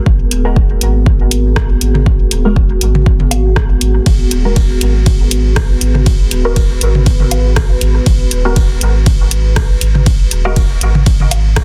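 A deep, tape-warm electronic kick drives this hypnotic, nocturnal dub techno cut from a longer piece, with a round, mellow sub bass carrying tube saturation and sidechain pumping beneath it. A dark, detuned ambient pad holds a single sustained minor-ninth chord throughout with chorus and its own reverb, while a muted, filtered chord stab colored by phaser, cassette-tape grit and dub echo enters at 0.5 seconds. A swung deep house kit of hi-hat, ride and rim click, with a softly clipped snare, fills out the groove, and analog-flavored electronic toms and woodblock join at 1.9 seconds, all within a dense, heavily limited, fairly dry mix.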